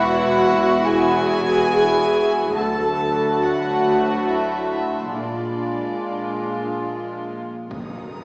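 Heard from further back in a wet scoring stage through a small-speaker sound, this mysterious, ominous suspense cue in 3/4 is a short cut from a longer film score. A soft-attack chamber violin section carries the floating melody, with an up-front symphonic violin section on a second line, a dark, lush viola section accompanying in the background, and a smooth-topped French horn section holding sustained chords. Beneath them, a rich cello section and a distant double bass section share the bass, a very quiet high violin texture hovers overhead, all the strings bowed sul tasto, until a huge, dark impact lands up front at 7.7 seconds.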